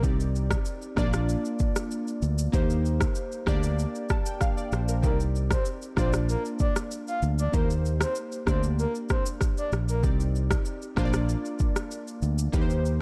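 Hypnotic and smooth, this afrobeats passage, cut from a longer piece, moves at an easy, straight four-beat pulse with a dark, warm production and little reverb. An afro-pop drum kit sits up front with a tape-warm sound, a deep kick, rim clicks and shaker, while a round, punchy fingered electric bass, direct and amped, anchors the low end from the start. Glassy digital keys with a chorus effect, fast-attack and decaying with a filter sweep, cycle through a loop of Cmadd9, Bb, Eb6 and Gm/D across the full 13 seconds. From 5.0 to 10.0 seconds, a soft, breathy flute-like synth lead enters with sustained notes, vibrato and a sub-octave layer, coloured by chorus and delay. Sitting quietly in the mix, that lead adds an airy glow before the groove carries on with drums, bass and keys alone.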